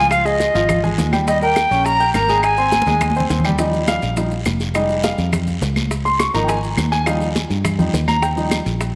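Festive, danceable salsa cut from a longer piece, where a breathy, bright jazz flute with vibrato and slapback echo carries the melody until 3.3 seconds, an intimate baby grand piano with audible action noise takes a solo from 3.6 seconds over a round, foam-muted fingered electric bass, and close, dry congas, tight bongos, woody claves, raspy guiro and grainy maracas sit in an echo-chamber reverb, with a drum fill at 2.7 seconds.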